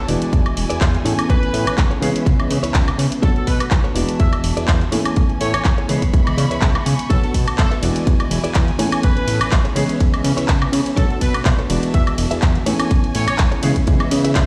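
Heard through a big sound system in a bare stone room, this cut from a longer filtered disco house track carries light digital reverb and a pumping pulse that ducks most of the parts. The mood is groovy and funky, with a gently swung 16th-note feel over a looping E7, Amaj7, C#m7 and Bm9 progression. A punchy, up-front electronic kick anchors the groove beside a layered house kit of handclaps, bright hats, ride cymbal and woodblock, all in a small room ambience. A fat, saturated analog bass with a detuned sawtooth edge holds the low end, while a dark, mellow grand piano with a phaser comps chords and a lush bowed violin section sustains softly in the background. A clean, compressed electric guitar picks a riff from behind the mix and adds a short fill at 6.1 seconds. From 1.3 seconds a clear, tight horn section plays the melody in a jazz style, sounding distant and roomy through tape echo.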